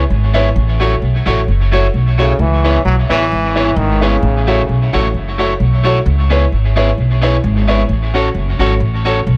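A brilliant trombone with scooped notes and tape echo sings a brief melody from 2.2 to 4.9 seconds in this energetic, driving ska excerpt at 131 BPM, carried by a dark, thumpy pizzicato upright bass up front, a slightly broken-up, picked electric guitar with its own tape echo, and a slightly detuned vintage upright piano playing stabs over alternating C#m7 and A6 chords, all in light reverb.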